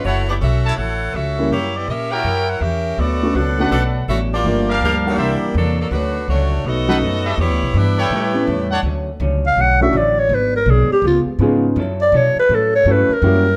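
Swinging big-band jazz at a brisk 164 BPM in 4/4, this brassy, joyful passage is cut from a longer piece. An edgy saxophone section with vibrato carries the melody up front, bathed in plate reverb, while a clear trumpet section punctuates with stabs and a woody, pizzicato upright bass anchors the low end beneath. A warm grand piano, intimate and natural with audible action noise, joins the accompaniment early, and a dark, clean hollow-body electric guitar adds picked support from 3.0 seconds. The harmony moves through a lively run of seventh chords before settling on Dmaj7 as the horns give way at 8.8 seconds. At 9.5 seconds a raspy, growling clarinet takes a gritty, mellow-edged solo with light vibrato and plate reverb, sitting forward in a large studio room with moderate reverb.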